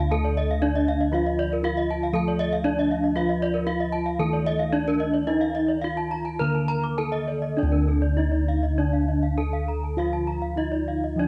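Bronze metallophones and bossed gongs sound together from the start of this hypnotic, brilliant Balinese gamelan fragment in D pelog, moving at 100-118 BPM in a straight 4/4. An up-front lead metallophone with paired tuning and a horn-mallet attack carries the shimmering melody, while a background metallophone struck with a wooden mallet supplies accompaniment and round, beating gongs anchor the bass, close and dry. Two bright, ringing metallophones spin arpeggios above, the second joining at 0.4 s; tape echo trails the melody and the higher arpeggio part, cassette coloring touches the metallophones, light studio reverb surrounds the home recording, and the music moves into a new section at 7.6 s.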